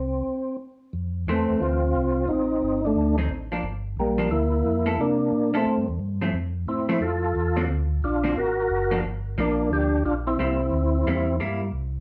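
A roomy, wet studio reverb places this short soul jazz organ trio cut a little back in the space, giving it a greasy, swinging feel at a brisk 178 BPM in 4/4 with a strong swing on the eighths, in F major. An overdriven tonewheel organ carries the melody from the start, its full, gritty tone marked by percussive second-harmonic percussion, chorus vibrato, a slow rotary speaker and a plate reverb. Beneath it, a second tonewheel organ handles the bass line in a mellow, round and dark voice, clean but also colored by chorus vibrato and a slow rotary speaker, running the full 12.0 seconds. A vintage hollow-body electric jazz guitar joins at 1.3 seconds with picked, compressed accompaniment that sounds dark and clean, sitting up front with the organs. After a brief stop near the opening, the band moves through a single section whose changes run from Fmaj7 through Am7b5, D7b9, Gm7 and C13, then back to Fmaj7, Daug, Gm7 and C7 as the fragment breaks off.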